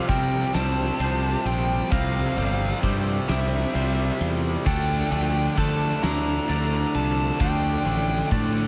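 A cathartic, cinematic post-rock passage in a slow 6/8, cut from a longer piece, where an up-front overdriven guitar riff and a round, punchy fuzz bass play alongside an oversized low-tuned drum kit with a boomy kick, fat snare and dark cymbals, while a biting overdriven lead guitar with digital delay carries the melody over faint twangy clean and twelve-string arpeggios and a very quiet ethereal, warbling pad, moving from Csus4 to Dmadd9 at 4.7 seconds.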